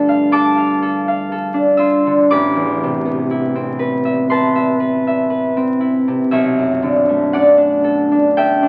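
Crackle from a very old 78 rpm record hangs over this brief passage, and a moderate stone-room reverb lends the notes a short, hard-walled glow. It is a classical piece for solo concert harp, mysterious and gentle in mood, moving in a free, rubato four-beat pulse. The acoustic harp sits up front, its fingerpicked strings warm and ringing across a span from G1 to E6, tuned slightly low with A4 at 438 Hz. The harmony drifts from G9sus4 to Amadd9 at 2.3 seconds, then to Bm11 at 6.3 seconds, giving the music a suspended, unresolved colour. Lasting just 8.7 seconds, the passage is cut from a longer work.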